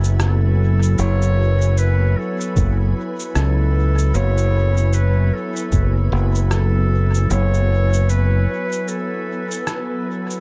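An echo-heavy, spacious mix with little reverb of its own frames this meditative ambient dub excerpt at 76 BPM in F# minor, resting on a single F#m9 chord with a swung 16th-note feel. A calm, warbling organ-like pad with ensemble chorus and an airy, wind-like noise texture hold sustained tones beneath a distant, roomy clarinet melody soaked in dub echo. A bright, up-front fingered electric bass plays until 8.5 seconds, muffled, pitched-down cabasa and rim clicks carry dub echo throughout, and a thumpy background kick sits between 2.6 and 5.9 seconds before a break from 8.9 seconds.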